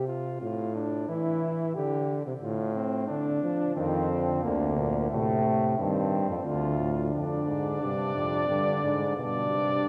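In a straight three-beat metre, this lively, elegant excerpt of an imitative classical brass canzona opens with a mellow flugelhorn second line over a warm, vibrato-tinged trombone accompaniment; a euphonium with light vibrato enters on the bass at 3.8 seconds, and a clear, soft-edged trumpet takes the melody at 7.1 seconds, all set in a wet church reverb captured from further back in the room.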